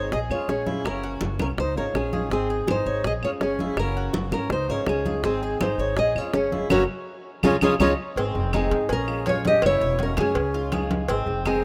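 A rough home-demo mix with light reverb and small-room ambience frames this sunny excerpt of Cuban son and guajira, where an up-front nylon-string guitar carries the fingerpicked melody with fresh strings and audible finger squeak while a breathy, reedy concert flute with vibrato adds a second line. A metallic Cuban tres picks arpeggios on double strings, a boxy old ladder-braced acoustic guitar fingerpicks accompaniment in the background, and a growly, thumpy pizzicato upright bass holds the low end. Ringing congas, round low-tuned bongos and cowbell, and distant woody claves fill out the percussion, and the band hits an accent from 6.7 to 8.2 seconds over the repeating Bbm7, Gb7, Dbadd9 and Ab changes.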